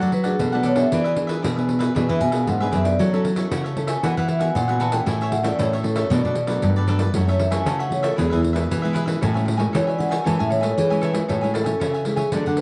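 Playful and festive, this short fragment of samba and choro features a mellow, ringing vibraphone, played with soft mallets and a slow motor vibrato, which carries the melody as a solo through to 11.3 seconds. Beneath it, two full-bodied, fingerpicked nylon-string guitars share the bass and the accompaniment, with a crisp, picked cavaquinho and a jingly pandeiro played with soft hands. The dark production sits in a moderate studio reverb, and the harmony moves through chords such as F#m7, Esus2 and Bm7 before settling on Amaj7.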